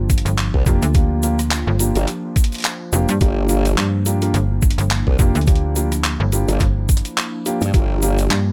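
A gritty, thumpy electronic kick drum sits up front in this playful glitch hop excerpt, its compressed, pitched-down, sampler-style punch driving a 106 BPM groove in 4/4 with a 57% swing on the 16ths. Around it, a boom bap sampler-style kit adds handclaps, hi-hat and rim clicks with a similarly crunchy, downpitched character in a small room, while a grainy, bright egg shaker sits close in the mix. Two basses share the low end over a Gm7 in G dorian: a snappy FM bass with a metallic, digital attack and a decaying tail, and a formant-sweep wobble bass entering at 0.5 s, built from pulse and sine tones, thickened with chorus and tube saturation. A dark, boxy grand piano drops in stabs from 0.7 s, treated with delay and sidechain pumping. Far behind everything, a warbling, nostalgic lo-fi pad of detuned square, triangle and sawtooth tones holds slow-blooming chords, washed in chorus, phaser, its own reverb and sidechain pumping, in an otherwise dry mix.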